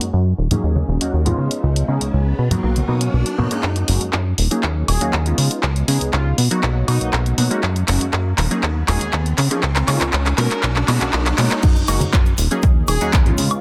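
A plucky, up-front sawtooth bass pumps against the sidechain in this groovy, nostalgic filtered disco house excerpt, joined by a detuned, chorused polysynth comp under a filter sweep, a punchy analog drum machine of handclaps, hi-hat, woodblock and crash, and bright egg shaker and congas in the background heard at the start and again from the drop at 11.6 s, while a riser builds from 0.9 s, a tape-warm electronic kick enters at 3.6 s, and a clear, distant horn section with light vibrato and tape echo carries the melody.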